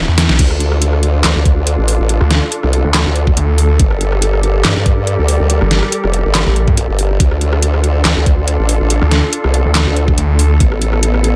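Heavy wobble dubstep in D minor at 141 BPM with a half-time, lightly swung feel, this menacing, chaotic excerpt opens on a brief drum fill and band accent before the drop lands at 0.4 seconds, moving through Dm, Gmadd9 and Asus2. A formant-sweep wobble bass with chorus and overdrive wobbles alongside a growling, detuned distorted saw bass, both sitting up front, while an electronic kick with a knocking punch and a dubstep kit of deep snare, metallic hats, handclaps, rim clicks and crash drive the groove. Beneath them, a lush bowed string section holds sustained chords with vibrato, pumping against the sidechain through a low-pass filter, all set in a digital ambience.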